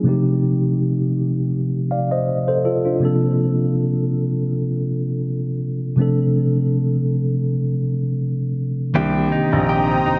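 A mellow, clean tine electric piano sits up front with a filter sweep across its first 8.9 seconds in this sensual, late-night R&B excerpt with a light sixteenth-note swing. At 9.0 seconds a clear, natural baby grand piano takes the bass and a direct-recorded, compressed, scooped electric guitar picks arpeggios through digital delay, and at 9.3 seconds a smooth, airy analog pad with chorus joins, all in a lightly reverberant space.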